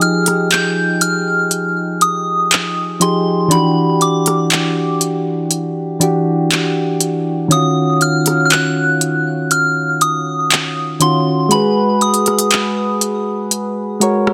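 A soft, pure FM synth bell carries the melody from the opening until 13.0 s through chorus, phaser and digital delay, over round, mellow electric-piano-like synth keys with their own chorus and an overdriven electronic R&B kit of handclaps, crisp hi-hat and rim click, giving this 60 BPM contemporary R&B fragment a sensual, late-night mood as it moves through Fm9, Em9, Ebm9 and Abm9 under light reverb and a dense, heavily limited modern master.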